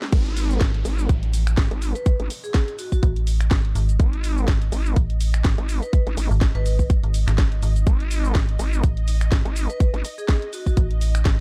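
This gritty, bouncy bass house excerpt opens at 0.0 seconds with a swell and downlifter in the background, alongside a layered electronic drum kit of cabasa, crash cymbal, finger snaps, hi-hat and a cracking snare, re-recorded in a small room. Almost at once a tight, overdriven kick arrives up front with a swung sixteenth feel. It is joined by a nasal, resonant vowel-sweep wobble bass, formant-filtered, thickened with chorus and tube saturation, and pumping from the sidechain. A metallic FM bass with a fast attack and a decaying tone adds a digital, mellow low layer, also saturated and pumping. From 2.0 seconds a bright vibraphone struck with hard mallets, motor off, rings out a melody through delay, while a cloudy, detuned granular pad with its own reverb drifts faintly behind. The wobble bass stops at 10.0 seconds in this dark, dry drop section, which is cut from a longer piece.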